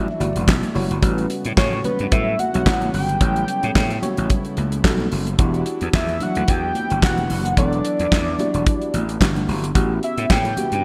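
A damped, dry drum kit with a fat snare, tight kick, handclaps and gated reverb drives this danceable early-eighties boogie funk groove alongside a growly, overdriven slap bass, a fat detuned sawtooth lead with vibrato and chorus singing the melody, a worn, slightly out-of-tune tine electric piano, a very quiet brassy analog pad holding Em9 and A13 chords, and distant, high-tuned congas, all in a bright digital production with a lush hall reverb.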